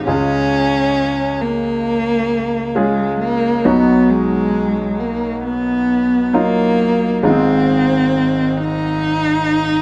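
A single bowed cello, up front with vibrato, soft attacks and expressive portamento, carries the heartfelt melody in this emotional pop fragment from a longer piece, while a polished, present grand piano accompanies it through Db, B and Ab6 chords, the two sitting in a wet studio reverb within a dark, warm production.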